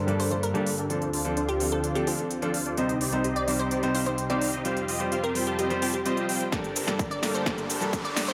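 A huge, dense supersaw riff drives this euphoric, anthemic festival progressive house build-up, its thick, detuned sawtooth body pumping against the sidechain while a filter sweep runs through the whole piece, trailed by tape echo. Alongside it, a smooth, vintage grand piano sits up front, playing pumping accompaniment with its own tape echo. A lush, warbling unison pad holds sustained chords through chorus. A glassy, crystalline wavetable pluck carries the melody with a decaying tone, shimmering with chorus and echo. The big-room drum kit brings a punchy snare, crisp hi-hats and cabasa, an electronic kick joins at 6.5 s for a drum fill, and a riser enters in the background at 7.3 s. The chords move from Gmadd9 through Dm7, Cm and Fsus2 back to Gmadd9, set in a moderate hall reverb, in what is an excerpt cut from a longer track.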